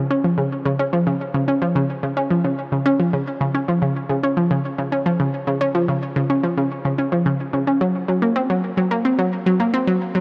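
An analog pluck synth plays alone, up front and bright, its detuned sawtooth tone given a round, chorused shimmer, a snappy filter attack and a decaying tail, with delay trailing each note. This luminous, cosmic ambient excerpt moves at a steady straight pulse in 4/4, the pluck ranging across an octave. A huge ambient reverb with a long 8.5-second tail surrounds the part, suspending its notes in a vast, glowing space.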